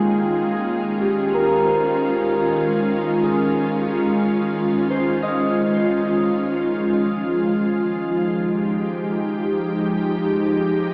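A mellow, detuned pad sits up front in this melancholic, reflective ambient excerpt at 54 BPM, holding sustained Eb9sus4 and Fm9 chords from Eb3 to G5 with ensemble chorus and its own reverb. A thumb-plucked concert harp rings through arpeggios from F4 to Eb5 under a diffuse delay until 7.4 seconds, after which the pad carries on alone to 10.9 seconds. The whole recording sits in a vast cathedral reverb with a narrow AM radio tone, giving it a distant, hazy quality.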